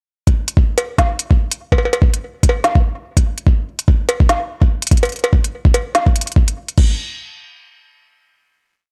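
IDM with a melancholic, cerebral mood, this short whole piece is built entirely from drums over a swung 4/4 groove. An electronic kick drum, sampler-style, compressed and pitched up, delivers a gritty, thumpy sound in a broken pattern, re-recorded in a large room and placed up front. Alongside it, an organic electronic drum kit plays a glitched, ever-changing beat of closed hi-hat, cowbell, snare and crash, with a woody snare, crisp hats and a tape-warm character from its small-room re-recording. Both parts run together from 0.3 to 6.9 seconds, the kick sitting louder than the kit. The groove gives way at 6.8 seconds to a final hit that closes the piece, all of it heard with little reverb.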